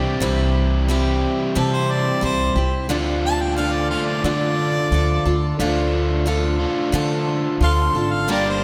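Reflective and wistful, this short rock excerpt at 89 BPM in D minor features a warm, jazz-style harmonica solo with light vibrato, scooped notes, tongue slaps and analog delay that sounds both up front and roomy, set over a bright, boxy picked parlour acoustic guitar, a double-tracked overdriven semi-hollow guitar riff, a woody, thumpy pizzicato upright bass and a very quiet, mellow tonewheel organ with key click and slow rotary speaker, all soaked in lush hall reverb as the harmony moves from C to Dm at 2.9 seconds.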